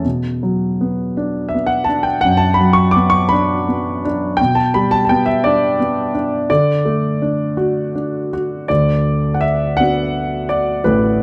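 A dark, warm production with light reverb places an intimate, warm grand piano up front, close enough to hear the natural action noise of its keys. This brief classical fragment of lyrical solo piano moves calmly in 6/8 at about 56 BPM in D major, its uneven beats pulled by gentle rubato across a span from A1 to D6. The harmony drifts from B minor through G over B to D, and at 8.7 s a new passage opens on a D6 chord.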